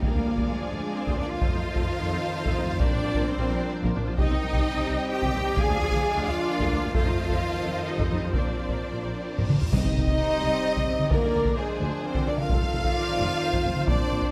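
Driven by heavy-stick taiko drums in a straight 3/4 at 130 BPM, this dark, epic orchestral film-score excerpt cycles through Ddim, F7, Bbadd9 and Cm as intense, bright violins carry a second line over a soft-attack, expressive violin melody, with lush violas, a focused string section, cellos and distant double basses filling the bowed body beneath. Roomy French horns and smooth-topped trombones hold sustained chords in the background, all set in a moderate scoring-stage reverb. A drum fill at 9.4 s and a huge cymbal swell at 9.5 s lead into a bright impact and a brief timpani hit at 9.7 s, opening the next section.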